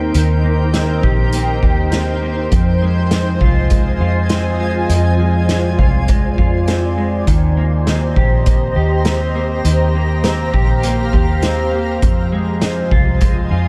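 Melancholic and hazy, this dream pop excerpt sets a dark, clean electric guitar playing arpeggios with lush chorus and delay over a shimmering, ethereal pad of sustained chords, a round, foam-muted fingered bass and an up-front vintage drum kit with a punchy kick, medium-tuned snare and hi-hat in a pumping small room, all moving between Eb6 and Fm7 chords.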